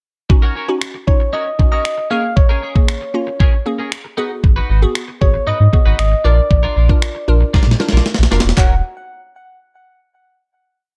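A gritty, compressed sampler-style drum kit with a thumpy kick, snaps and handclaps drives this bittersweet dance-pop piece in Eb minor at 116 BPM, under glassy, pumping wavetable pluck chords, a twangy, choppy twelve-string electric guitar riff with lush chorus, a round, keys-like FM lead whose motif-based call phrases arrive at 1.1 seconds with delay, and a deep, syncopated sub bass with octave that enters at 4.4 seconds, before a drum fill sets up a final Ebm7 chord at 8.6 seconds.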